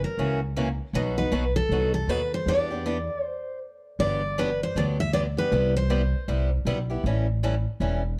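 Swinging and bittersweet, this short cut from a longer piece is acoustic string swing in the jazz manouche style, moving at 157 BPM in 4/4 with a lilting swing on the eighth notes, starting in E minor before turning toward G major at 4.0 s. A bright, full-bodied picked steel-string guitar carries the melody up front, its fresh strings sitting in a plate reverb until it drops out at 6.5 s. Beneath it, a boxy picked archtop guitar supplies the accompaniment, while a pizzicato upright bass on gut strings gives a woody, thumpy foundation. The band halts briefly in a stop from 3.2 s to 4.0 s, then the second section moves through Gmaj7, Cmaj7 and A7. The production is dark and warm with light reverb, keeping the three instruments close and intimate.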